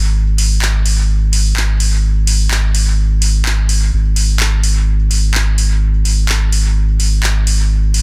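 A steady 4/4 pulse at 127 BPM with a light swing on the sixteenths drives this short dub techno excerpt, its mood deep and nocturnal. A soft dub sub bass opens the piece at 0.0 seconds, holding a low G#1 with a round, mellow tone that blends triangle and square waves, its fast attack giving way to long, sustained notes placed up front. At 0.4 seconds a soft vintage rhythm box joins, an analog electronic kit of handclaps and metallic hi-hats that also sits close to the listener. Dub echo trails the rhythm box hits, adding repeats to the otherwise dry setting. The sound carries little reverb and arrives through a dense, heavily limited modern master, with both parts running to the end at 8.0 seconds.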